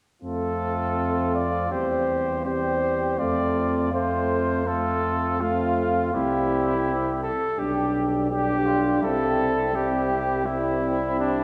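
From 0.2 s, a brass quintet begins together in F major, unfolding a noble, stately passage at 82 BPM in 4/4 with a rubato feel. Up front, a mellow trumpet carries the melody between D4 and D5 with light vibrato, while a warm flugelhorn with a vintage tinge traces a second line. Set in the background, a present-sounding French horn and a smooth-topped trombone hold the accompaniment in the middle register. A tuba with vibrato anchors the bass as the harmony moves from F through C/E and back to F, then settles on C, passes through G/B and returns to C at 9.0 s. A wet concert hall reverb surrounds the ensemble, and this excerpt of a longer piece closes at 11.4 s.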